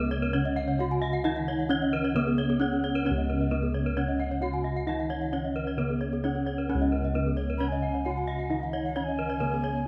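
A steady, straight four-beat pulse drives this ceremonial gamelan passage, cut from a longer piece. A bronze metallophone struck with wooden mallets carries the melody toward the front. Beneath it, a mellow metallophone played with padded disc mallets sits in the background with a boxy small-room tone. Above, a bright, airy horn-mallet metallophone and another wooden-mallet instrument spin arpeggios, and their paired tuning throws off shimmering beats. Close-miked bossed gongs hold the bass with a round, full, dry sound, while a breathy tenor recorder enters at 7.6 s with a hollow, tongued second line touched by chiff and vibrato. A moderate concert-hall reverb surrounds the ensemble and lets the bronze ring out.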